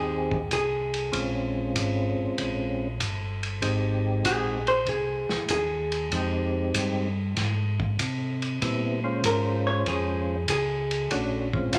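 Late-night and smoky, this soul jazz organ trio excerpt moves at 96 BPM in 4/4 with a swung eighth-note feel, set in F minor. A dark, clean hollow-body electric guitar sits up front, its picked, compressed tone carrying a solo across the full 11.8 seconds. Beside it, a percussive tonewheel organ plays the melody with a round, mellow voice, second-harmonic percussion, key click, chorus vibrato and a slow rotary speaker. A second tonewheel organ handles the bass line, equally clean and dark, turning slowly through its own rotary speaker. The vintage acoustic kit enters at 0.3 seconds with hi-hat, kick, snare and ride: a punchy kick, a medium-tuned snare and shadowy cymbals with a rolled-off top. The harmony moves between Fm7 and Bbm7 inside a moderate large-studio reverb, a fragment cut from a longer piece.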